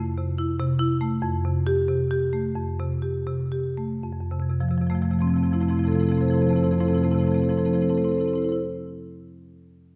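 Played with rubato in 4/4, with a slowing in the opening four seconds, this short excerpt from a contemporary classical piece for solo marimba has a playful, warm mood. The marimba, struck with medium hard mallets on padauk bars, sounds woody, bright and percussive, sitting mid-forward and up front as it spans a range of F2 to C5 over chords of Fmaj7 and Am7/F before returning to Fmaj7 at 4.0 seconds. A wet scoring-stage reverb with a 1.5-second decay surrounds the instrument, and the piece shifts into a new section at 4.0 seconds.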